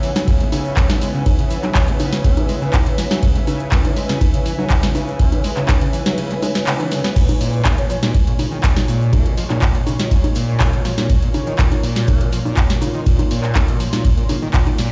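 A squelchy, gritty acid bass riff with dub echo and sidechain pumping drives this hypnotic acid house excerpt over an up-front deep electronic kick, a booming analog drum machine with crisp snare, metallic hats, handclaps, congas, ride and crash, a very quiet grainy egg shaker, a smooth detuned sawtooth pad holding sustained chords in the background and an ethereal airy pad shimmering with tremolo; after a short break at 6.2 seconds, a breathy, hollow flute note with tape echo drifts past at 7.8 seconds, and the mix plays through a big sound system in a bare, reverberant room with a dull top end.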